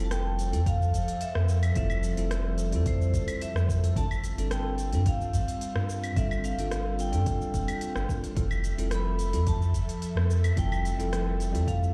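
Heard as if played through a big sound system in a bare room with a large studio reverb, this smooth, sunny sunset chillout cut from a longer piece moves at 109 BPM in F major, from Fmaj7 to G9sus4 and back. A metallic, ringing vibraphone struck with medium hard mallets carries the melody through tape echo and shimmer reverb, over a bell-like, clean tine electric piano with digital delay and an airy, breathy pad with chorus and vintage 12-bit sampler grit. A deep, round sub bass sits up front, while a tape-warm electronic R&B kit of claves, smooth hi-hat, rim click and shaker enters at 0.1 s and a soft electronic kick joins at 0.7 s.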